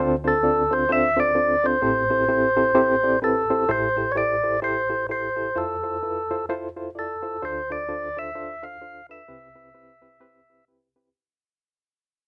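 Soul in a swung 4/4, passionate and urgent, cut from a longer piece with a reedy, clean electric piano laying down chords under fast tremolo while a lightly overdriven, fat, percussive tonewheel organ carries the melody up front. The organ's second-harmonic percussion and stationary speaker shape its line, and a small room adds moderate ambience. Moving through Dm7, Am7, Fmaj7 and Cmaj7, the music begins to fade at 3.7 seconds and continues fading until the electric piano stops at 11.1 seconds.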